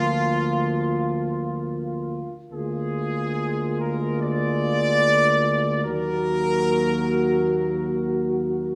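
This classical, hymn-like brass band piece moves with a solemn, elegiac mood and a flexible, rubato pulse, heard as a short section cut from a longer work. A clear, close-miked trumpet section carries the melody up front with light vibrato, while a warm, tight French horn section adds a second line just beneath it. A mellow euphonium with light vibrato provides accompaniment alongside a distant, roomy trombone set in the background, and a smooth-topped tuba anchors the bass. All five parts sound together from the opening to about 8.8 seconds, and the harmony darkens to an E-flat minor chord at 5.8 seconds. A moderate scoring-stage reverb gives the ensemble a spacious, dignified bloom.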